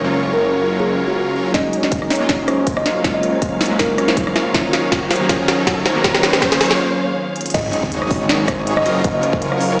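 Lush and playful, this future bass excerpt moves at 160 BPM in a half-time 4/4 feel with a light swing, set in Gb major and cut from a longer piece. A woody, hollow-toned kalimba carries the melody from the start, close and dry, over glassy digital keys with chorus and a huge supersaw riff sitting in the background, both pumping against the sidechain, while a very quiet, distant string section holds bowed chords with vibrato throughout. A thick detuned saw bass sounds briefly at the opening, then the trap kit and a punchy layered electronic kick arrive at 1.5 seconds for a build-up of crisp hats, sharp snare, rim clicks and drum fills, as a filter sweeps the supersaw and a riser climbs toward a short break. At 7.5 seconds the drop lands with an impact, the bass returning and a concert harp adding fingerpicked arpeggios in the background. The chords circle through Gbmaj7, Ab7sus4 and Ebm7, bathed in a lush hall reverb, though the whole mix sounds as if played on a big sound system in a bare stone room and heard through a small speaker.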